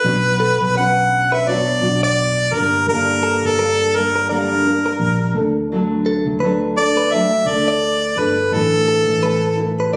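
Heartfelt and sunny, this acoustic pop excerpt at 85 BPM in D major swings gently in 4/4 as a clear, up-front harmonica with light vibrato carries the plate-reverbed melody over a dark, full-bodied, double-tracked nylon-string guitar fingerpicked with audible finger squeak, a round, foam-muted vintage electric bass, and a clean, direct-recorded electric guitar adding picked arpeggios from 0.4 seconds, all moving through Bmadd9, Gm, D and Asus4 in a phone recording made in the room, with moderate studio reverb and compression.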